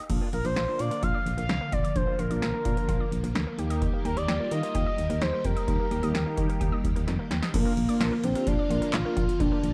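Synth-pop at 129 BPM in Bb major, upbeat and nostalgic, this short cut from a longer piece moves from Bb to Eb and back, with an electro analog drum machine's deep kick, punchy snare, metallic hats, handclaps and crash sitting up front beside a round, punchy FM bass, and a drum fill at 7.1 seconds leading into a new section at 7.5 seconds. An expressive portamento lead carries the melody up front with smooth vibrato and chorus, over brassy detuned synth brass with ring modulation and a filter sweep, a swirling, warbling string machine holding sustained chords through ensemble chorus and phaser, and a nasal, wave-folded analog pluck playing arpeggios in the background. The production is dark and warm, set in light reverb and digital ambience.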